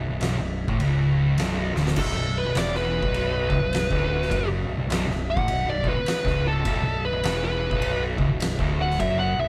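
Recorded live by a band in one room with moderate studio reverb, this brooding stoner and doom metal excerpt sits on B minor at 102 BPM with a swung 4/4 feel. A dark, thick fuzz guitar and a compressed fuzz guitar in the background grind out the riff over a growling, overdriven picked bass, while an oversized low-tuned drum kit, gritty and saturated with a fat snare, punchy kick and pumping stone-room sound, enters at 0.2 seconds and plays a fill at 1.7 seconds. At 2.0 seconds an up-front fuzz lead guitar takes a solo in a high register over the heavy bed.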